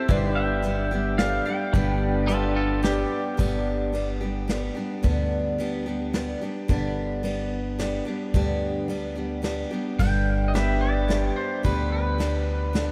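A twangy pedal steel melody with tape echo opens this sunny, easygoing honky-tonk excerpt in 3/4 at 109 BPM in G major, over a bright, full-bodied picked dreadnought acoustic guitar and a second, background pedal steel holding sustained chords through a lush chorus. A mellow, very quiet upright piano, a woody, thumpy pizzicato upright bass up front and a soft brush kit with dark cymbals and a punchy kick settle in, while a clean electric guitar adds a brief delayed line around 2.3 seconds. After a stretch carried by acoustic guitar, bass and brushes, the melodic steel returns at 10.0 seconds and the chordal steel follows at 10.6 seconds, and a huge, dreamy ambient reverb soaks the whole mix.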